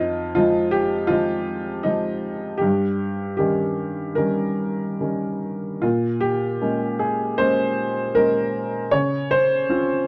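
A woody, slightly detuned upright piano sits up front, playing alone in this dark, melancholic, rubato classical fragment of a longer piece. Moving freely around 70-83 BPM in 4/4 and Bb dorian, it spans F2 to Db5 through Fm7, Eb7/G, Bbm7 and Dbmaj7 over 10.1 seconds, with a smooth, vintage tone framed by light reverb and a shadowy, warm production.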